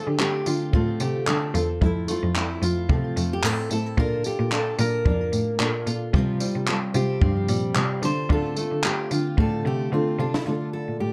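A lightly swung sixteenth-note groove in 4/4 carries this reflective, wistful acoustic pop fragment, where a fingerpicked steel-string guitar with digital delay carries the melody over a woody, double-tracked nylon-string guitar, plunky open-back banjo arpeggios tucked in the background, and a clear, bowed cello bass with vibrato up front. Meanwhile, a compact cocktail kit of tight kick, high-tuned snare, handclaps and tambourine enters at 0.2 seconds and closes with a fill from 9.4 to 10.5 seconds. It is all set in light reverb and a dark production as the chords move from Dm7 through Fmaj7, Bbmaj7 and Csus4, back to Dm7, before settling on Dm.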